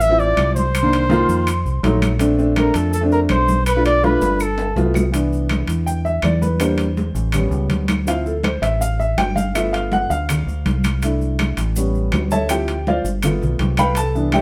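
Captured with light reverb as a band playing live in one room, this danceable, sophisticated Afro-Cuban jazz excerpt opens with a warm, close-miked flugelhorn carrying the melody with scooped notes, shadowed in the background by a breathy concert flute with vibrato until 4.8 seconds. Underneath, a dark, round fingered electric bass sits up front alongside ringing congas, grainy maracas, woody claves and compressed, saturated metal-shell timbales, and a drum fill at 4.2 seconds leads into a new section. From 5.1 seconds the boxy, short-sustained upright piano, heard as accompaniment almost from the start, takes over with a solo over a cycle of rich jazz chords.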